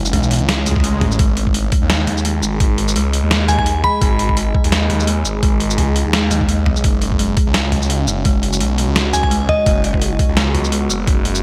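Bright, 1980s-style digital sheen with light reverb frames this heavy, dark half-time drum and bass excerpt at 170 BPM in G# minor, where a swirling, thick phased saw bass and a gritty, pitched-down sampler kit with gated reverb sit up front beside a thumpy electronic kick entering at 0.8 seconds, while a woody kalimba with 12-bit grit and delay ringing through arpeggios, a deep, mellow pad with chorus and sidechain pumping in the background, a brief electronic swell, and crystalline FM bell phrases at 3.5 and 9.1 seconds complete the picture.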